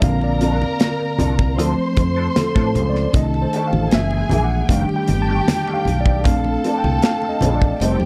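Cinematic and smooth, this short excerpt of lush 1970s-style soul moves at a relaxed 77 BPM in a straight 4/4, with a mellow tine electric piano up front taking a solo across the whole 8.1 seconds over chords running from Bbmaj9 through Dm7, Cm69, F#9 and F13 back to Bbmaj9. A round, direct fingered electric bass and a punchy acoustic drum kit with kick, snare and hi-hat sit forward, while low-tuned, thick-skinned congas stay very quiet and a bowed string section with vibrato and portamento adds a second line high above. From 0.4 seconds a dark, compressed electric guitar plays a riff through wah and ensemble chorus, all set in a small room with light reverb and a dusky production.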